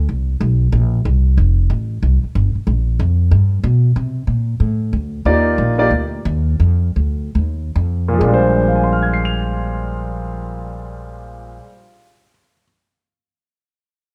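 Big band swing jazz in Bb major, joyful and brassy, with a woody pizzicato upright bass up front from the start, a warm concert grand piano with deep bass entering briefly at 5.3 seconds and returning at 8.1 seconds as the tempo slows through a shift to Bb mixolydian, all set in a large studio reverb and cut from a longer piece.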